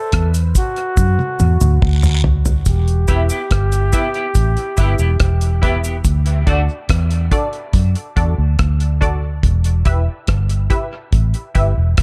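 A dark, round, foam-muted vintage fingered electric bass sits up front in this heavy, meditative dub reggae piece in E minor, moving at a slow 71 BPM in straight 4/4. Beside it, a cloth-damped drum kit with a tight kick, hi-hat, rim click and toms sounds dry and thuddy with a rolled-off top, and a drum fill closes out the opening break. A breathy, whispered flugelhorn carries the intimate melody with light vibrato and a soft attack, its dub echo trailing until it drops out at 6.0 seconds. Cabasa and guiro add close, dry shaker and handclap textures with their own echo. At 3.1 seconds a clean, scooped electric guitar enters with analog chorus and dub echo, along with a deep, nasal, detuned chord stab whose fast-attack filter pluck decays into chorus and echo. The harmony shifts between D and Em, and the whole mix sits in a studio reverb. This is a section cut from a longer piece.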